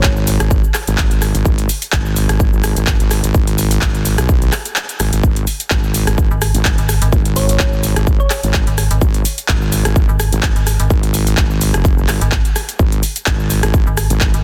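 A dense, heavily limited and nearly dry mix opens this gritty, aggressive bass house fragment in G# minor at 127 BPM with a 16th-note swing, where a saturated, chorused sawtooth-and-sine wobble bass pumps up front over a punchy layered electronic kick that drops out from 4.8 to 5.2 seconds, a big-room dance kit of metallic hats, cabasa, handclaps and rim click, a dark, tine-like thumb-piano-style pluck with chorus and dub echo flickering in the background, and a digital, overdriven FM bass that joins at 6.3 seconds.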